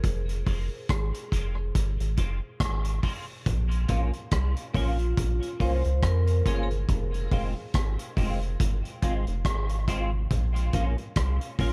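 An echo-heavy mix with light reverb and a small room ambience gives this fragment of a longer dub reggae piece a meditative, deep atmosphere. A rubbery square-wave bass sits up front as the loudest part, its dark, hollow tone bouncing between F1 and F2 with a resonant filter pluck and a moving notch. The vintage acoustic drum kit is also forward, its hi-hat, punchy kick and rim click sounding saturated and gritty with a rolled-off top over a swung sixteenth-note feel. A semi-hollow electric guitar enters at 0.5 seconds with clean, fingered accompaniment dressed in ensemble chorus, a high-pass filter and dub echo, while very quiet, low-tuned congas played with soft hands sit distant, as if in a large room. A bright, metallic vibraphone struck with hard mallets rings out a quiet melody with medium motor vibrato and dub echo as the harmony moves between Fm and Bbm.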